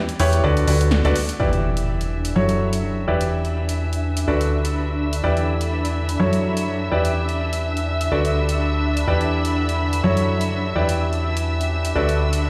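This piano house excerpt feels bittersweet yet energetic, with a lightly swung 16th-note groove. A clear, smooth concert grand piano sits up front with a riff touched by digital delay. A fat analog bass shares that up-front presence, its detuned, saturated tone thickened by tube saturation and a filter sweep. The house drum kit keeps to punchy snare and tape-warm hi-hats further back. At 1.4 seconds an electronic impact hits, as bowed studio strings with vibrato enter high and low-pass filtered, while a cloudy, evolving granular pad blurs in from 2.1 seconds. Chords cycle through D6, Em7 and F#m7, and a lush hall reverb and stony room ambience surround the whole mix.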